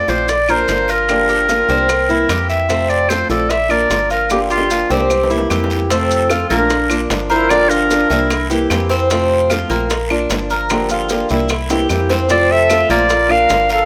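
A moderate studio reverb gives this sunny Cuban son and guajira excerpt a sense of open space, with a clear, smooth-topped clarinet up front carrying the classical-style solo melody. Beneath it, a fingerpicked flamenco guitar lays down a warm accompaniment while a bright, double-strung Cuban tres ripples out picked arpeggios, and a dark, digital FM bass with a fast, decaying attack anchors the low end. Tight, high-tuned bongos played with soft hands, woody claves, a raspy guiro and grainy maracas sit back in the mix, adding a couple of drum fills along the way. At 5.9 seconds a breathy, hollow jazz flute with vibrato and a tongued chiff joins from a distance as a second line under the clarinet. Both winds fall silent at 8.5 seconds, leaving the guitar, tres, bass and percussion to cycle through the Bb, Gm7, C7 and F progression, and the two winds return together at 12.3 seconds before the cut.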